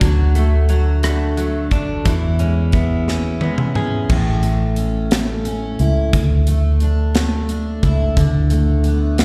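A heartfelt, tender pop ballad in 6/8 and A major, moving slowly at 59 BPM counted in dotted quarters, heard in this brief cut from a longer piece as a live gig through the venue's PA with small room ambience and recital hall reverb. A jumbo steel-string acoustic guitar, double-tracked and full-bodied, carries the picked accompaniment throughout, while a direct-recorded clean electric guitar, compressed and treated with tape echo and slapback echo, plays arpeggios until 4.7 seconds. Underneath, a vintage foam-muted fingered electric bass sits up front with a dark, round, amped tone, anchoring the low end. The modern studio drum kit is airy and polished, with a punchy kick, a medium-tuned snare, rim clicks, hi-hat, toms and crash cymbal, and a drum fill from 3.1 to 4.1 seconds leads into the second section. The chords move from D to E6, then settle on A before passing through Dsus2 to Bm7/D.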